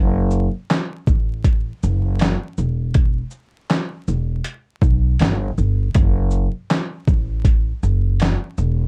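A woody, pizzicato upright bass on gut strings opens this melancholic, reflective lo-fi hip hop excerpt at 80 BPM in 4/4, sitting low and up front. At 0.3 s a gritty, overdriven soul sampler-style kit joins, with a thumpy kick, fat snare, hi-hat, shaker and handclaps, all compressed with 12-bit grit and a swung 16th-note feel. The dark mix carries vinyl crackle and little reverb, holding one reflective section for the full 8.9 seconds.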